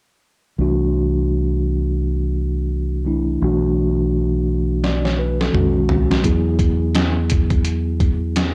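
A muffled, thumpy sampler-style drum kit, overdriven and pitched down, breaks in at 4.8 seconds with a fill in this smoky, cool jazz-hop fragment at 85 BPM with a swung sixteenth-note feel. From 0.6 seconds, a mellow tine electric piano with a cassette-tape tint and a round, dark fingered dub bass warmed by tube saturation carry the harmony through C69, Bm7, B69 and Eadd9. Light reverb and the character of a home cassette recording give the whole piece a lo-fi, homemade feel.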